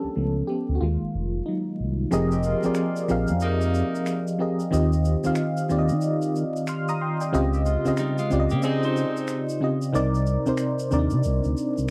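A mellow FM electric piano opens this soulful neo-soul excerpt, its soft, round tone shimmering with chorus and tremolo, while a dark, gliding synth bass with sustained portamento notes sits up front beneath it. The groove moves at 92 BPM in 4/4 with a lazy sixteenth-note swing, and the harmony drifts through lush chords such as Dbaug7, Fm11, Dbmaj9#11 and Cm9. A tube shaker and finger snaps slip in quietly at 2.1 seconds, and a horn section follows moments later with warm, distant stabs touched by light vibrato. Around 8.0 seconds a clean, picked electric guitar adds a brief compressed second line with its own tremolo. The sound is dry and close, like a 1970s studio session, with vinyl crackle lending an intimate, vintage feel.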